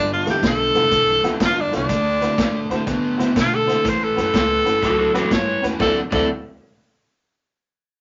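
A swung shuffle drives this soulful, laid-back electric blues snippet, where a bright, up-front tenor saxophone sings the melody with vibrato and a soft attack. Beneath it, an overdriven semi-hollow guitar picks a warm riff and a woody, growly pizzicato upright bass holds the low end, while a jangly, detuned honky-tonk upright piano and a vintage kit with dark cymbals and a punchy kick join at 0.3 s. A dark, overdriven slide guitar adds an up-front second line at 4.8 s, all set in a small, reverberant room with a rolled-off top.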